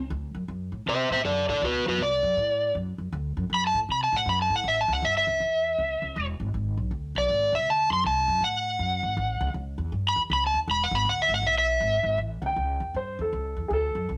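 Electric blues shuffle at 159 BPM with a swaggering, rollicking swing, in which a woody pizzicato upright bass runs throughout under a dark, overdriven slide guitar that sits up front and solos from 0.9 to 12.2 seconds over D7, A7 and E7 changes, before a warm grand piano steps forward at 12.4 seconds, all captured as a rough rehearsal-room fragment with tube saturation and moderate studio reverb.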